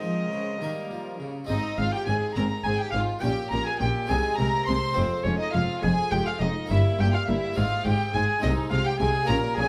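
A dark, nasal solo violin leads this brilliant, lively baroque-style concerto excerpt in 6/8, carrying the melody over gut-strung, period-style violin sections that double the tune and add a second line. Beneath them sit a distant viola section, a dry, full French-style harpsichord and a reedy cello section in the background. At 1.5 s a rich, close double bass section joins the bass line as the music moves into a new section, heard in a moderate recital hall reverb.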